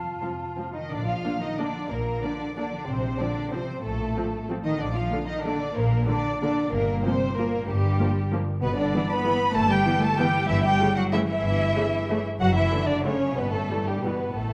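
Bathed in a recital-hall reverb, this excerpt of an elegant, sweeping orchestral ballroom waltz in Bb major moves in a rubato 3/4 at 168-207 BPM: an airy, hollow concert flute sounds a brief second line only from 0.0 to 0.7 s, while a ringing harp plucks arpeggios in the background and veiled, con sordino cello and double bass sections carry the bass, and from 0.2 s lush, up-front muted violins take the melody over a distant second violin line and dark-toned violas giving soft-attack accompaniment.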